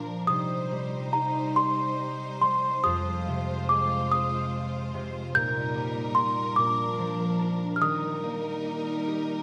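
A small, bell-like celesta carries a delicate, sweet melody from 0.3 seconds, its close, dry tone touched with a slapback echo, in this innocent, gentle lullaby fragment of children's music with a lilting 6/8 rubato sway. Underneath, a ringing, fingerpicked concert harp sits up front in the accompaniment while a lush studio string section holds smooth, vibrato-rich sustained chords. The progression drifts from minor colours home to the tonic as a brief harp fill closes things at 9.1 seconds, all set in a moderate recital hall reverb.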